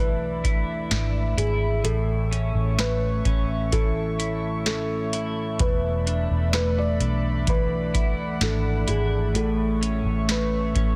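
A booming analog drum machine enters at 0.4 seconds with a deep kick, crisp snare and metallic hats, set up front beside a round, punchy, foam-muted vintage bass in this blissful, ethereal dream pop fragment cut from a longer piece. A clean, compressed electric guitar picks dark arpeggios through lush chorus, delay and shimmer reverb, while a warbling, lo-fi tape-like pad holds nostalgic sustained chords that alternate between E7sus4 and A. Meanwhile, a felt-muted upright piano plays an intimate, smooth melody bathed in delay and shimmer, all within a light digital ambience and a dense, heavily limited modern master.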